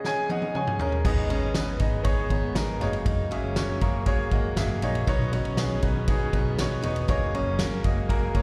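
Hopeful and warm, this short piano-driven pop passage moves at 119 BPM in a straight 4/4, cut from a longer piece and heard as a live gig through the venue's PA with a recital hall reverb. A clear, polished baby grand piano sits up front with plate reverb and slapback echo, joined from the start by a natural country drum kit with a fat snare, punchy kick, crash and ride cymbals and toms, which opens with a drum fill during a break over the first 1.1 seconds. A picked steel-string acoustic guitar with fresh strings plays a riff through slapback echo, while a dark, round, foam-muted vintage electric bass enters at 1.0 seconds alongside a very quiet studio string section holding bowed chords with vibrato, portamento and a smooth top. A jingly, band-limited tambourine stays in the background from 1.6 seconds, and the piano adds a fill between 3.6 and 5.1 seconds. The harmony moves from F#sus2 to G#m, then through F#add9 and Badd9 before returning to F#add9.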